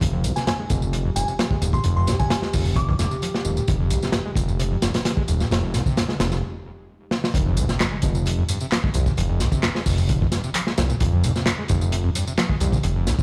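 A funky, playful breakbeat excerpt at 131 BPM opens on a crunchy, saturated drum kit with a punchy kick, dry electronic tambourine and handclaps, a fat, detuned sawtooth bass up front, a squelchy, distorted acid bass riff and a deep, moody pad holding Fm7 in the background, while a glassy FM bell melody rings out until 3.1 seconds; the pad stops at 6.4 seconds for a brief break and drum fill, and the drop at 7.3 seconds settles on Fm with a very quiet electronic impact, the whole mix sitting in a large studio reverb.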